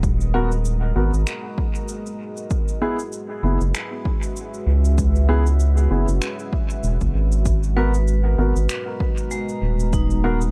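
A deep, warbling pad with chorus and its own reverb, a round analog bass up front, a punchy overdriven electronic kick, and cabasa and finger snaps also overdriven and cast into dub echo open this meditative, hazy ambient dub excerpt over G#m9 and F#9sus4 chords, while mellow, woody upright piano stabs ring through dub echo from 0.3 seconds and a metallic, ringing hard-mallet vibraphone adds tape-echoed arpeggios from 7.8 seconds in a dark, dry production.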